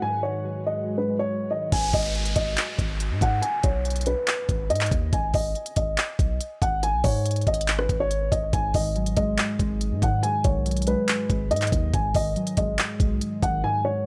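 Eerie and hard-hitting, this half-time trap excerpt opens on a dark, boxy concert grand carrying the melody with tape echo and audible action noise, over warbling lo-fi synth keys and an ethereal, airy pad sitting in the background. At 1.7 seconds the pad drops out as a trap kit with a knocking kick, crisp hats, handclaps, rim clicks and crash arrives up front, joined by a long, deep 808-style bass with tube saturation and a brief electronic downlifter. The nostalgic synth keys return at 8.5 seconds beneath the intimate piano, all within a dry, gritty hardware sound cut from a longer piece.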